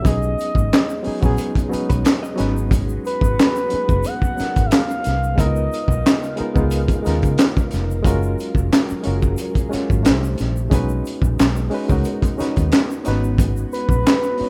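A rough home-demo mix with little reverb carries this soulful, late-night neo-soul R&B excerpt at 90 BPM in G# dorian, lightly swung on the sixteenths over chords moving from B6 through G#m11, C#13 and F#maj9. A crunchy, saturated breakbeat kit with a high-tuned snare and tight kick sits up front beside a round, foam-muted fingered bass. A barky, reedy electric piano with overdrive and fast tremolo plays the accompaniment, a silky string machine with phaser and ensemble chorus holds soft chords behind it, and a faint egg shaker and finger snaps sit in the background. A gliding lead with chorus and vibrato carries the melody until 6.7 seconds and returns briefly at 13.7 seconds, while a clean hollow-body jazz guitar adds a short background line at 1.9 seconds.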